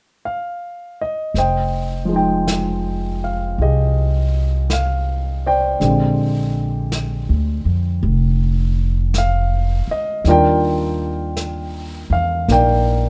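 A jazz ballad excerpt with an intimate, smoky mood, moving at a slow, swung pace in four. A grand piano carries the accompaniment from the start, sitting up front with a natural tone and the audible noise of its action, ranging from D3 to G5. An upright bass joins at 1.3 seconds, plucked on steel strings with a woody, thumpy character, also placed close and forward. A brush drum kit enters at 1.4 seconds, set back at a lower level, its airy, polished snare and hi-hat sounding as if in a small room. The harmony settles on Fm9 as the band comes together, then moves through Bb13 to Ebmaj9, all under a light reverb.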